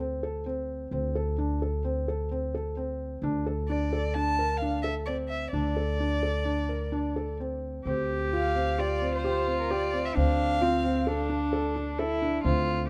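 A dark, sul tasto violin carries the melody from 3.7 seconds, its bowed vibrato hovering over a felt-muted upright piano whose soft, mellow arpeggios and a pizzicato upright bass holding a low D set a hypnotic, pensive pulse in 5/4. At 7.9 seconds a single cello joins with a reedy, gut-string second line in period style, as the harmony moves from Bbmaj7 over D toward Csus4 and Dm7. Close, detailed microphones and light reverb keep this chamber piece intimate, with every player up front.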